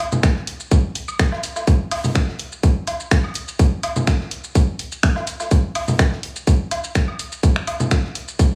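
Techno at 125 BPM in a straight 4/4, this sparse, clinical excerpt is cut from a longer piece and built entirely from percussion. A tight, overdriven electronic kick sits up front, while a dry, punchy analog drum machine adds finger snaps, hi-hat and shaker, and layered, tape-tinged congas and woodblock come forward with dub echo before stopping at 7.9 seconds. In the background, a modern studio kit supplies high-passed hi-hat with sidechain pumping and a medium-tuned snare, all held in a small, nearly dry room.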